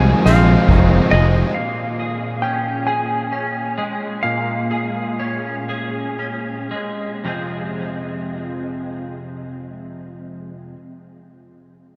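A dreamy mix soaked in a huge, wet ambient reverb opens this brooding, melancholic post-rock passage in F minor, cut from a longer piece and moving slowly in 6/8 at 36-46 BPM counted in dotted quarters. For the first 1.5 seconds, a raw garage guitar tucked in the background and a sludgy distorted guitar both play an overdriven picked riff. Beneath them, a growling fingered bass, amped, overdriven and up front, holds the low end until 1.4 seconds. A soft-mallet drum kit with a boomy kick, medium-tuned snare and dark ride cymbal sounds briefly between 0.3 and 1.3 seconds, set back in a natural hall. Throughout, an up-front, twangy twelve-string electric guitar carries compressed arpeggios with ensemble chorus and tape echo. A dark lap steel sings a slide melody played with fingerpicks, also with tape echo, until 6.1 seconds, while the tempo slows and the harmony moves from Fm7 to Bbm7 before settling on Fm.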